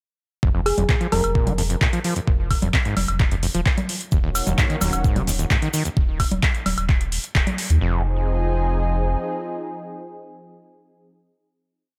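A four-on-the-floor overdriven kick drives this gritty acid house piece. A squelchy, resonant acid bass line with slides and a deep, saturated sub bass pump beneath metallic hats, claps, woodblock and congas. A round, tine-like pluck briefly appears, a grainy cabasa joins at 4.1 seconds as a lush, detuned pad enters on Ebm7, and the pad holds a final Fm7 chord from 7.8 seconds.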